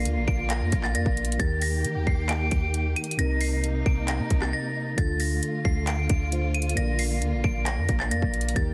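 A dense, heavily limited modern mix set in a digital ambience opens this brooding, menacing trap excerpt, cut from a longer piece and moving at 134 BPM in a half-time 4/4 feel. A metallic, inharmonic FM bell carries the melody in a high register, its vintage, ringing tone warbling through chorus, phaser and digital delay. Beneath it, a mellow tine electric piano plays clean, direct accompaniment while a dark symphonic string section holds lush, bowed chords with expressive vibrato and a smooth top. A deep, boomy 808-style bass with a pure sine character anchors the low end, and an electronic trap kit enters at 0.1 seconds with a hard-clipped kick, metallic hats, handclaps and rim clicks sitting up front. The harmony moves from Bb through Eb and Cm7 to Dm before returning to Bb, with a brief break between 4.5 and 5.0 seconds.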